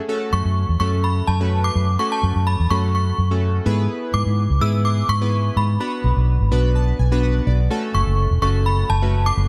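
Glossy, chorused retro synth keys open this driving, energetic dance-pop excerpt at 0.1 s, blending pulse-wave and sawtooth tones with pulse-width modulation and a filter sweep in a bright, fast-attack, decaying voice. At 0.3 s a punchy vintage electric bass arrives up front, its muted, fingered tone round, amped and dark. At the same moment a chiming FM synth carries the melody high above, inharmonic and ringing with a long release, treated with ensemble chorus and tremolo. The harmony moves from F#m to E and Bm before returning to F#m, and the synth keys play a fill starting at 6.3 s. Light reverb surrounds a dark, warm production with a steady, straight drive.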